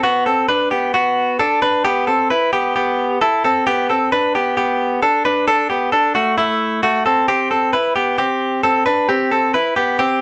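The recording sits in a moderate studio reverb with a short, natural tail, and its top end is gently rolled off, giving a soft, slightly vintage sheen. This brief indie pop passage, cut from a longer piece, features a lone clean electric guitar, recorded direct and placed up front. Its tone is bright and twangy, with a compressed, even quality to the picked notes, which stay within a modest middle register. The chords move through Bm, Em, G and Dadd9 in a straight, easy 4/4 before shifting to C at 7.3 seconds for a short new section that carries through to 10.2 seconds. The mood is nostalgic yet breezy, like a sunny memory replayed.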